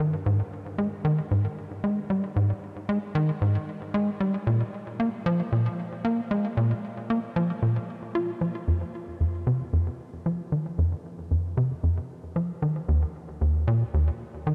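Hypnotic and mysterious, this ambient excerpt in F minor at 114 BPM sets a tight sequencer bass playing alone for its full 14.5 seconds, its punchy, driving sawtooth and square-wave tone marked by ring modulation, a filter pluck and fast decaying attacks, sitting up front through cassette tape and delay inside a huge reverb and a dark, warm production.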